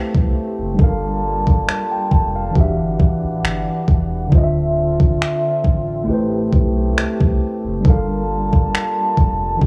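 This excerpt opens with a mellow tine electric piano and a dark brass ensemble sounding together, setting a late-night, sensual mood in contemporary R&B at a slow 68 BPM with a light sixteenth-note swing. The electric piano sits up front, clean and direct, while the brass holds sustained chords from a distance, roomy and classical in style with light vibrato and a sidechain pumping that makes its chords breathe against the beat. At 0.1 seconds a sub bass with an octave joins, deep and full with a sine-and-triangle tone, fast attack and long sustain, alongside a smooth, electronic R&B drum kit of finger snaps and a knocking, tape-warm kick that is the loudest element in the mix. The harmony drifts through rich minor ninth chords, moving from Am9 through Gm9, Em9 and Dm9 before circling back. The overall sound is dry and gritty, with little reverb and only a small room's ambience, giving the groove an intimate, close feel.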